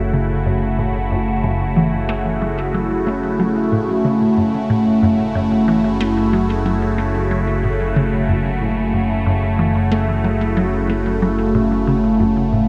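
Expansive and cosmic, this excerpt of sequencer-driven space music holds a single F#m7 chord throughout, with a swirling, up-front phased analog pad sustaining detuned sawtooth chords over a mellow, evolving analog drone that anchors the low end with chorus. A squelchy, resonant blip pluck enters at 0.1 seconds with a bright, juicy filter-plucked riff colored by phaser and tape echo. Everything sits in a wet echo chamber with a 2.0-second reverb tail, giving the echo-heavy mix a deep, floating sense of space.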